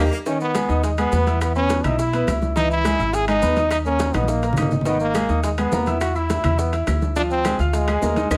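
A full-band accent opens this fiery, passionate salsa excerpt at 209 BPM in G# minor, with a brilliant, punchy trombone, a clear concert grand piano and an upright bass sounding together from the start. The forceful solo trombone sits up front, singing the melody with vibrato in a present, pop-style tone, while the piano's accompaniment reaches into a deep bass register. The upright bass is dark and thumpy, its pizzicato gut strings giving a woody pulse just as close to the ear as the horn. Within the first second the percussion fills in behind: bright, damped congas played with soft hands, very quiet high-tuned bongos, grainy maracas, ringing metal-shell timbales and woody claves. A drum fill from 4.1 to 4.9 seconds pushes the groove onward as the chords move from G#m through C#m7 and G#madd9 to A#7/D, all set in moderate studio reverb.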